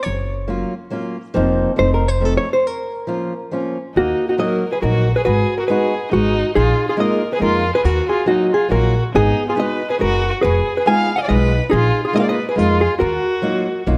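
Bittersweet and whirling, this excerpt from a longer musette waltz turns in 3/4 at 139 BPM with a swung lilt, as a dark, clean, compressed hollow-body jazz guitar carries the fingered melody up front over woody pizzicato upright bass and a fingerpicked steel-string acoustic guitar with audible finger squeak, until a break at 2.7 seconds gives way to a move from Bb harmonic minor to Eb minor at 4.0 seconds, where a single bowed violin with vibrato adds a shadowy second line, all in light reverb.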